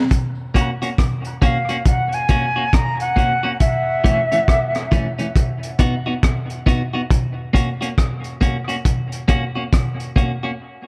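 A slow, swung dub reggae groove at 69 BPM in 4/4 sets the pace, carried by a crunchy breakbeat drum kit of hi-hat, kick drum and rim click that sits up front with a punchy kick, a saturated grit and a rolled-off top. A clean electric guitar provides the accompaniment from 0.5 s, its bright, twangy, picked tone trailing dub echo through a chord movement of F#, A, B and back to F# in F# major. A jazz flute carries the melody from 1.4 s to 5.3 s, airy and distant, with a chiff on its crisp attacks, expressive vibrato and its own dub echo. The dark production places the parts in light reverb and small room ambience, giving the laid-back mood a spacious feel. This is a section cut from a longer piece, and it reaches a break at 10.6 s.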